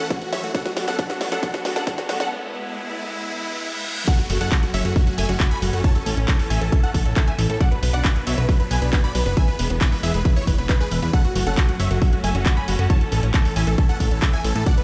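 Emotional and soaring, this uplifting trance passage at 136 BPM in F# minor is cut from a longer piece and opens with a build-up: a drum fill and filter sweep lead in while a background riser and reverse cymbal rise beneath, before the drop lands at 4.1 seconds. A huge, euphoric supersaw lead with phaser and digital delay carries the melody over a lush, detuned unison pluck tinted by cassette tape, distant bowed strings holding sustained chords, a very quiet, round analog pluck playing arpeggios, and a fat, saturated sawtooth bass placed up front. A punchy kick and a house kit with cracking snare, handclaps, hi-hat and crash drive the track as the bass, lead, unison pluck and strings pump with sidechain, and the whole mix has little reverb yet sounds as if played through a big system in a bare stone room.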